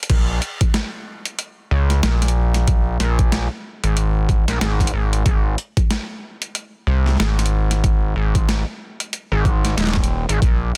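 A dry, dense and heavily limited mix opens this roughly 11-second cut from a longer glitch hop track, which sits in a gritty, swaggering drop in Bb minor at 93 BPM with a 16th-note swing of 59%. A boom bap sampler-style kit of crash, hi-hat and a medium-tuned snare is joined by an up-front, overdriven electronic kick with a thumpy, compressed punch, both re-recorded in a small room. Over them, an aggressive, saturated synth bass built from sawtooth, sine and triangle waves with oscillator sync and wave-folding delivers resonant, fast-attack filter plucks between Eb1 and Db2.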